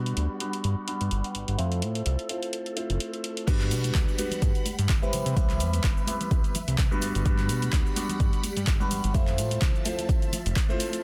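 Filtered disco house with a joyful, sunny mood, built on a bright, brilliant concert grand piano playing phased, pumping accompaniment over a fat, detuned sawtooth analog bass with tube saturation, while a swirling vintage string machine with 12-bit grit sustains chords in the background. Under a filter sweep, punchy overdriven drum-machine hi-hat, handclaps, shaker and crash pump along with the mix from the start and carry on through the drop at 3.5 seconds, when an up-front, overdriven electronic kick arrives with soft-handed tambourine and congas set back in the mix. The Gmaj7 and Fmaj7 chords sit in digital ambience within a dense, heavily limited master, and this cut from a longer piece loses its bass at 10.5 seconds.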